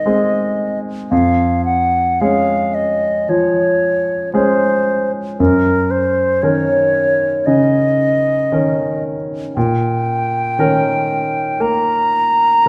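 A moderate recital-hall reverb of 1.5 seconds surrounds this tender, serene fragment of a romantic classical duo in rubato 4/4, tuned to A4 = 439 Hz, where a pure, straight-toned concert flute with a crisp attack carries the melody up front while a clear, polished grand piano with deep bass and short sustain accompanies through Ab, Db/F, Ebm7/Gb and Eb7/Bb harmonies.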